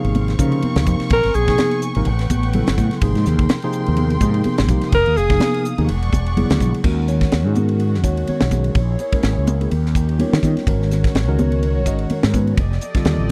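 A clear alto saxophone, up front with vibrato, subtone and scooped notes and a touch of tape echo, plays two brief jazz phrases around 1.1 and 4.9 seconds over a nocturnal, slick electric jazz fusion groove in Eb minor at 126 BPM, swung on the sixteenths. A round, dark fretless bass and a crisp fusion kit with a high-tuned snare and punchy kick sit forward, while high-tuned congas with a thick skin stay in the background and a clean tine electric piano accompanies through chords such as Bbm9, Abmaj9 and Ebm7. Soft-attack bowed strings played sul tasto hold sustained chords underneath, all captured in a dry, close 1970s-style studio sound in this cut from a longer piece.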